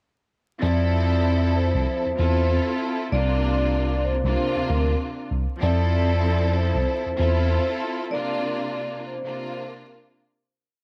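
Nostalgic yet confident, this short boom-bap hip-hop piece rolls along at 96 BPM in F major with a lightly swung 16th-note feel, cycling between Fmaj7 and C9sus4 chords. A mellow tine electric piano carries the deep looped bass line, clean, warm and up front, with muted ghost notes and a tone colored as if heard through built-in speakers, dropping out at 7.6 seconds. A warm studio string section plays chopped, bowed ensemble chords with vibrato and a focused, smooth top, repeated like a sampled loop. Above them, a vibraphone struck with medium mallets spins a short looping melody, its metallic, ringing tone kept dark by filtering, touched with delay and colored by a slow motor vibrato. Studio reverb and a bed of vinyl crackle give the whole thing a dusty, record-sourced atmosphere, and from 8.1 seconds a break sets in as the track fades out.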